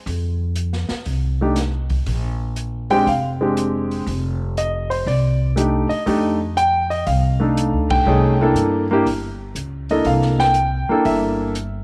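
A relaxed, sophisticated jazz piano trio excerpt swings easily in four, with woody, thumpy pizzicato upright bass and a dark-cymbaled acoustic kit of hi-hat, ride, snare and boomy kick setting the groove from the start, an intimate concert grand with audible action noise entering on melody at 1.4 seconds over rich dominant harmony, a band accent landing at 7.8 seconds, and spring reverb lending the small room a gentle bloom.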